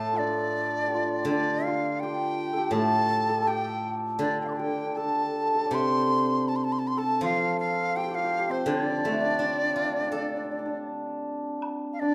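Bathed in the generous reverb of a recital hall, this short cut from a longer Chinese traditional piece has a graceful, tender character. A Chinese chamber ensemble plays in D yu mode at 82 BPM in 2/4, with a rubato feel that lets the phrasing breathe. Up front, the large bamboo dizi carries the melody with an airy, buzzing-membrane tone, crisp attacks and vibrato, closely miked so its brightness cuts through. Beside it, the hammered dulcimer traces a shimmering second line, while the steel-string zither, played with fingerpicks, supplies a silvery, ringing accompaniment until 11.6 seconds. A brief acoustic woodblock accent follows at that moment, and at 12.0 seconds a low, end-blown xiao enters on a single tongued note, its warm, breathy voice closing the passage.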